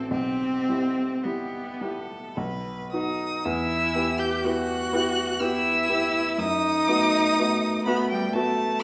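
In a rubato 3/4 at 52-63 BPM, this melancholic, solemn slow romantic movement for piano trio in E minor, cut from a longer piece, sets a clear, focused bowed violin melody with vibrato over a rich cello second line and warm baby grand piano accompaniment, all three up front yet bathed in a wet recital hall reverb, shifting into a new section at 3.4 seconds.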